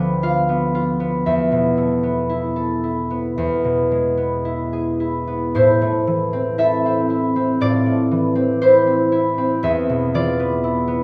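A concert harp plays alone throughout this short classical passage, cut from a longer piece, its fingerpicked strings ringing up front with a warm, acoustic tone across a range from D2 to G5. The mood is gentle and mysterious, set in A minor at a slow 54-62 BPM in 4/4, with a rubato feel that lets the phrasing breathe freely. The harmony opens on a B diminished chord over D, moves through Esus4 to E, and then settles onto A minor at 5.5 seconds as the second section begins, returning to E near the close. A wet recital hall reverb surrounds the harp, and the listener seems placed further back in the room, lending the plucked notes a lingering, spacious halo.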